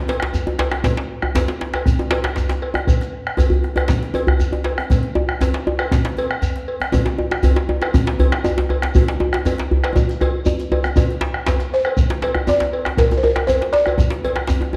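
A straight 4/4 groove at 119 BPM drives this festive West African drum ensemble excerpt, where a metallic cowbell, a grainy shekere, a deep bombo and two djembes, one rattling with metal and the other close, dry and up front, play in a dark recital-hall reverb, with drum fills at 3.5 and 10.0 seconds before a woody, buzzing balafon enters up front at 11.7 seconds.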